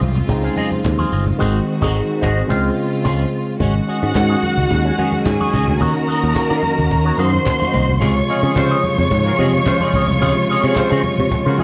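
Disco at 109 BPM with a sultry, danceable feel, built on a punchy picked electric bass, a woody cajon, soft congas, a worn, slightly out-of-tune tine electric piano with light overdrive, a twangy, clean envelope-filtered electric guitar with phaser, and a rich string section holding sustained chords in the background over Dbmaj7, Ab7 and Ebm7 harmony. A band accent lands at 1.4 seconds, and from 3.6 seconds a dark, up-front violin section adds an expressive second line with portamento, joined by faint hollow handclaps at 4.2 seconds and tight, octave-doubled horn stabs at 8.3 seconds. The production is dark and warm with light reverb and small-room ambience, in a short cut from a longer piece.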